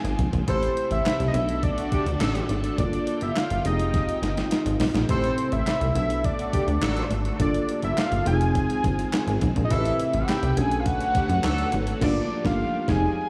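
A clean 12-bit drum machine with a thumpy kick, medium-tuned snare, handclaps, hi-hat and crash drives this late-night, funky slice of early-eighties boogie funk in a straight four, rolling through a fill at 3.9 seconds beneath a punchy, plucky analog bass that sits up front. A fat, detuned sawtooth lead carries the melody with chorus, vibrato and analog delay, while a lush string machine holds phased chords in the background, and from 0.5 seconds a mellow, round FM electric piano and a smooth horn section with light vibrato fill in the harmony and a second line. Minor-ninth and minor-seventh chords cycle throughout, and a band accent lands at 12.0 seconds, all set in a dreamy mix soaked in hall reverb.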